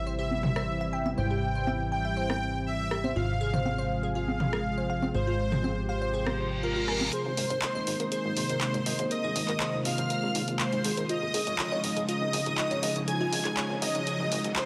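Expansive and euphoric, this progressive house passage in Ab major moves at 121 BPM in a straight 4/4, with a smooth, full-bodied supersaw melody carrying echoes over a lush, detuned unison pad, a punchy, funky analog bass and a crystalline wavetable pluck spinning chorused, delayed arpeggios. A tape-warm analog drum machine taps out congas, rim clicks and toms in a small-room ambience until 7.1 seconds, while a very quiet reverse cymbal and riser enter from 6.3 seconds. From 7.1 seconds the build-up begins as a layered pop kit brings up-front handclaps and hi-hats and a distant, bowed symphonic violin section adds a focused high line in the background.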